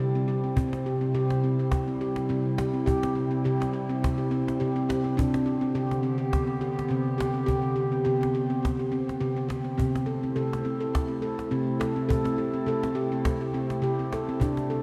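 A ringing handpan plays up-front arpeggios from the start at 104 BPM with a light swing, shimmering through tape echo in this calm, dreamy meditative world piece in C major, joined at 0.6 seconds by a woody, close cajon with faint snares, over a warbling, nostalgic, detuned pad of sustained chords moving from C to G/C to Am/C, all soaked in a lush hall reverb.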